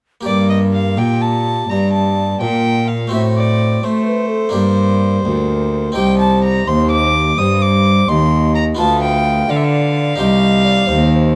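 A dark production with light reverb frames this grave, solemn baroque-style sonata movement in G minor. It moves at 85 BPM in a rubato 12/8 and is cut from a longer piece. A bright, airy, French-style harpsichord enters at 0.2 s as plucked accompaniment. At 0.3 s it is joined by a mellow, woody baroque flute carrying the pure, tongued melody with vibrato, a rich gut-string violin playing the second line, and a reedy cello holding the bass. Violin and cello are each bowed by one player in period style, up front with light vibrato. The harmony moves from Gm through F#dim/A back to Gm, then on to Cm and Bdim/D before returning to Cm.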